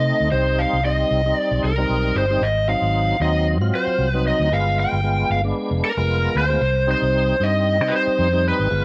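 Soulful and smoky, this short straight-eighth soul blues cut from a longer piece moves through Cm, Ab7, G7b9 and back to Cm, with a dark, overdriven lead guitar carrying the melody up front from a small cranked amp. Beneath it a full tonewheel organ, lightly overdriven and turning through a slow rotary speaker with chorus vibrato, supplies the accompaniment, while a round, amped fingered electric bass sits forward in the mix. All three parts play together throughout the 8.8 seconds, set in light digital reverb.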